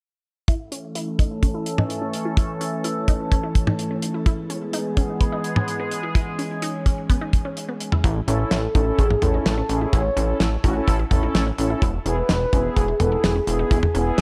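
Nostalgic and wistful, this synth-pop excerpt moves at 127 BPM in a straight 4/4, built on a simple swing between A and E chords. It opens at 0.5 seconds with a bright, warbling pad holding sustained chords under a filter sweep, while a squelchy, detuned blip pluck spins arpeggios through a phaser and analog delay in the background. A damped 70s drum kit sits up front from the start, dry and acoustic, with a fat snare, a tight kick, hi-hat and toms. At 8.0 seconds the pad drops out and a glossy, nasal synth bass takes over the low end, saturated and chorused, soon joined by dark, brassy synth brass chords and a round, horn-like lead carrying the melody with gentle vibrato. Shimmer reverb glows around the pad, pluck, brass and lead, all inside a small-room ambience, giving the passage a vintage, dreamy sheen.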